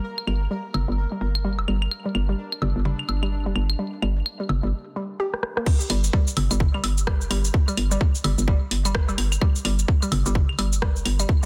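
A swung 128 BPM minimal techno groove in 4/4 opens on G minor, with a hollow, bouncy square pluck riff and a punchy FM bass pumping against the pulse while a garage kit of bright hats, cabasa, rim click and crash mixes with tape-echoed electronic claves, toms and woodblock. A pulsing, triangle-based gated texture with chorus and reverb shimmers until 4.8 seconds, a filter sweep rides the arpeggio and a drum fill at 5.3 seconds leads into the drop at 5.7 seconds, where a tight, up-front kick enters and the harmony falls away. The mood is quirky and clinical, with a dry, dense, heavily limited master.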